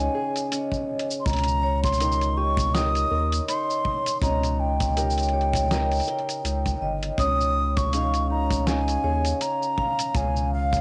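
Pastoral and delicate, this folktronica excerpt moves at 81 BPM with a light 16th-note swing, its harmony shifting from Dbsus2 to Eb/Db before settling on Dbadd9. An airy, close-miked baroque flute carries the expressive melody up front with vibrato, over a dark, ringing vibraphone second line and small fingerpicked nylon-string guitar arpeggios, both touched by tape echo, while a round sine sub bass sits deep and forward. A muffled, pitched-down sampler-style kit of cabasa, hi-hat and snare enters at 0.4 seconds, joined by a punchy kick in the background from 0.7 seconds, all within a lightly reverberant small-room home cassette recording that tops out at 10.6 kHz.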